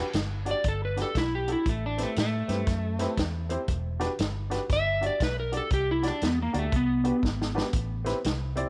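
A small room ambience with light reverb surrounds this brief cut from a longer electric blues shuffle in E minor, moving at 118 BPM in 4/4 with a swung eighth-note feel. The mood is soulful and mournful, and the harmony passes from a rootless Em7 to Am7, back to Em7, then returns to Am7 near the close. An up-front electric slide guitar carries the melody, its slightly broken-up tone colored by tape echo, entering at 0.5 seconds and holding the spotlight until 7.2 seconds. Beneath it, a vintage acoustic drum kit with a punchy kick, medium-tuned snare, hi-hat and rolled-off top keeps the shuffle going and adds a fill starting at 7.2 seconds. A dark, round, foam-muted fingered electric bass anchors the low end, while a woody, slightly detuned upright piano with short sustain supplies the accompaniment.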